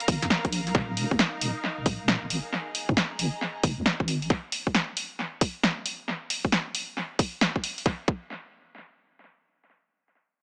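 Echo-heavy and lightly reverberant with a small-speaker sound, this bouncy, skippy two-step UK garage excerpt sets a tight, overdriven, up-front electronic kick and a dry, punchy analog drum machine of hi-hat and snare with tape echo against a deep, dark, chorused wobble bass and a lush, distant bowed string section that pumps under sidechain and fades out by 4.3 seconds, when the bass also stops, leaving the drum machine and kick to run on until 7.8 and 8.2 seconds.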